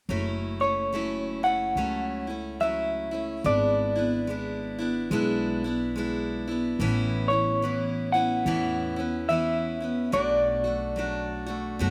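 A slightly broken-up, lo-fi electric guitar carries the melody, played through a small old amp with tremolo and slapback echo, and enters at 0.6 seconds to sit in a high, narrow register. Beneath it, a bright, full-bodied jumbo steel-string acoustic guitar is picked up front as accompaniment from 0.1 seconds, while a woody, thumpy upright bass plays pizzicato low in the mix. This short clip, cut from a longer acoustic folk piece for a duo or small band, has a pastoral, gentle mood at a relaxed 72 BPM in 4/4 with a light swing on the eighth notes. The harmony moves through F#m7, E7/G#, Aadd9 and Bm7, all within a single section that runs to 11.9 seconds. Recorded outdoors with little reverb, the sound is dry and free of room sound.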